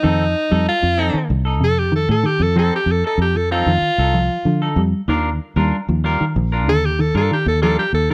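A dry, close sound in the manner of a 1970s studio frames this short cut from a longer afrobeat piece in F mixolydian, moving at 95 BPM in a straight 4/4 with a driving, joyful mood. The breathy alto saxophone takes the solo up front across the full 8.1 seconds, its edgy, pop-style tone marked by scooped notes. Beneath it, a fingered electric bass sits just as far forward, round and foam-muted with a direct, amped character. A mellow electric guitar plays dark, clean arpeggios with the fingers in a low register, while a second guitar adds bright, twangy picked stabs higher up. The harmony rests on F7 before shifting to Ebmaj9 at 5.1 seconds.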